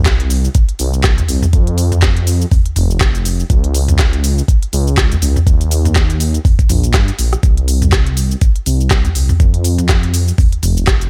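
A digital ambience frames this spiritual, earthy afro house excerpt, its 4/4 groove carrying a light swing on the sixteenths. A dark, detuned sawtooth bass rumbles deep and up front from the opening, its beating, sustained tone pumping against the sidechain, while a knocking electronic kick drives the pulse from 0.1 seconds. An electronic afro-pop drum kit sits up front alongside it, with smooth hi-hats, handclaps, rim clicks, shaker and toms filling out the rhythm.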